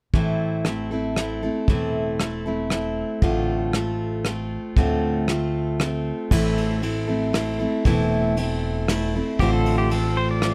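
Close, detailed microphones and very little reverb give this short cut from a longer piece an intimate, dry presence. It is a lonesome, brooding honky-tonk and classic country piece in 3/4, moving between A minor and a D minor seventh over an A bass. The bright, fresh-stringed picked acoustic guitar sits up front and carries the accompaniment throughout, with a woody, thumpy pizzicato upright bass underneath and a soft brush kit of dark, smooth cymbals, a tight kick and rim clicks, its top end rolled off. After the passage turns to a second section at 6.3 s, a clean, twangy pedal steel enters only at 9.4 s with a compressed second line, using fingerpicks, slide and volume swells in the final moments.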